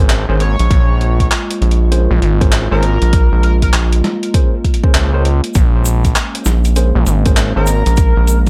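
A rubbery, hollow square-wave bass sits up front and bounces through this funky, playful glitch hop excerpt alongside a gritty, saturated sync-driven synth bass with an aggressive, evolving edge. A punchy, layered electronic kick and a compressed, sampler-style boom bap kit of handclaps, hi-hat and a medium-tuned snare, re-recorded in a large room, give the groove its swung sixteenth-note feel. An edgy, tearing sync lead with vibrato and chorus carries the melody from 0.4 to 3.7 seconds and returns at 7.6 seconds, while a worn, slightly out-of-tune tine electric piano adds lightly overdriven stabs with tape echo. Beneath them, a nostalgic, warbling lo-fi pad holds a Bbm9 chord in the background, pumping with the sidechain. From 5.5 seconds a grainy, close and dry egg shaker joins, all set in a dark production with light reverb.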